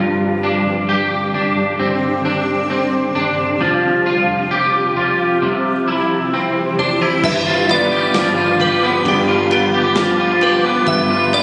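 Dream pop at a slow 66 BPM in 4/4, this short cut from a longer piece feels floating and ethereal, moving from Gsus4 through Fsus2 and C before landing on G7. Up front, a twangy, slightly broken-up electric guitar picks arpeggios through ensemble chorus and delay, while a shimmering ambient pad holds sustained chords with an octave-up, granular glow shaped by chorus, phaser and its own reverb. Beneath them, a foam-muted, round electric bass sits in the background. At 6.8 seconds a dreamy, warbling FM bell carries the melody through ensemble chorus and delay, and at 7.2 seconds a muffled vintage drum kit with dark cymbals, tight kick, snare and tambourine joins alongside a very quiet, delicate celesta that rings until 10.3 seconds. The whole mix sits in a lush hall reverb with a phone-in-the-room character and a softened top end.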